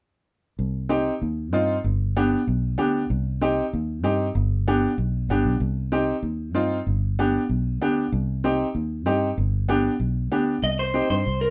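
A band playing live together in one room comes across with moderate studio ambience, giving this short cut from a longer Latin piece a close, immediate feel. At a brisk 191 BPM in straight 4/4 and C harmonic minor, the mood is passionate and danceable, with the harmony swinging between Cm and G throughout. A fingered electric bass enters at 0.6 seconds, dark, round and foam-muted, sitting up front in its low register. A clear upright piano joins at 0.9 seconds with a woody, vintage tone and short sustain, carrying the accompaniment in a compact middle range. Near the close, at 10.6 seconds, an electric guitar through a small old amp steps in with a twangy, slightly broken-up melody, coloured by spring reverb.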